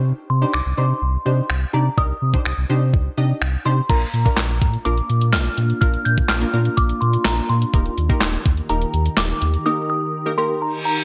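Dance-pop with a carefree, upbeat mood and a bright 1980s-style digital sheen, cut from a longer piece and set in a light digital ambience. A clean 12-bit drum machine sits up front with a thumpy kick, medium-tuned snare, hi-hat, handclaps, finger snaps and crash cymbal, overdriven and wrapped in gated reverb. A deep, full sub bass with an added octave pumps with sidechain alongside punchy, detuned sawtooth chord stabs that warble with chorus and phaser over a vintage filter pluck. Above them, a crystalline FM synth bell carries the melody in a high register with fast, decaying notes. From 4.8 seconds a dark, ethereal FM pad enters with slow attack, ensemble chorus and its own reverb, and an up-front reverse cymbal comes in at 10.7 seconds as the excerpt cuts off.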